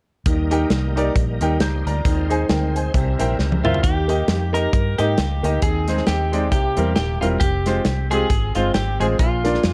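A dry, dark-toned production carries this jubilant, soulful uptempo gospel in Eb major at 134 BPM with a swung 4/4 feel, where a clear grand piano with audible action noise, a round, foam-muted electric bass and a punchy modern studio drum kit play throughout, a bright, shouting tonewheel organ with fast rotary speaker and light overdrive holds chords until 3.9 s, and around a drum fill a clean, scooped electric guitar at 3.6 s and a distant, vibrato-laden saxophone section at 3.7 s take up the melody.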